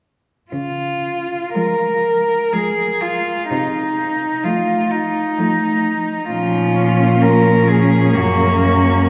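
A clear, up-front cello carries the melody over an expressive bass cello with soft attack and portamento from 0.5 s. Two more smooth, even cellos join on a second line and an accompaniment around 1.5 s in this serene, rubato classical excerpt for cello ensemble in 3/4 at 57-66 BPM in Db major, moving from Db through F7/C and Bbm to Gb, with vibrato on every bowed part and a distant, wet church reverb lasting 3.2 s.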